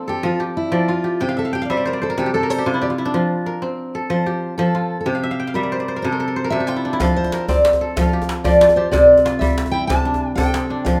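A moderate recital-hall reverb surrounds this flowing, hypnotic West African string and xylophone excerpt in a straight 12/8, cut from a longer piece and circling between F and C. A dark, full-bodied dreadnought steel-string guitar carries the fingerpicked melody as a solo throughout, finger squeak audible. Beside it, an up-front kora rings out crisp arpeggios, adding fills from 1.2 and 5.2 seconds, before a tight, cracking djembe with metal rattles and hard hands, compressed and saturated, enters at 7.0 seconds.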